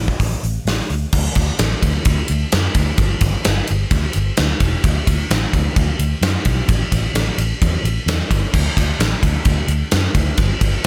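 This shoegaze and dream pop rock fragment, cut from a longer piece, carries a dreamy, hazy mood over a straight 4/4 pulse. A gated 80s drum kit sits up front, its bright cymbals and airy stone-room sound framing a medium-tuned snare and a tight kick, with hi-hat, ride and crash all in play. Beneath it, a vintage muted fingered electric bass supplies a dark, round, foam-muted low end, staying between E1 and F#2 from the start until about 10.8 seconds. The drums, slightly louder than the bass, come in at 0.1 seconds, and after a brief opening passage the music moves into its main section at 1.1 seconds. The overall recording is dry, with little reverb beyond the drums' own gated room.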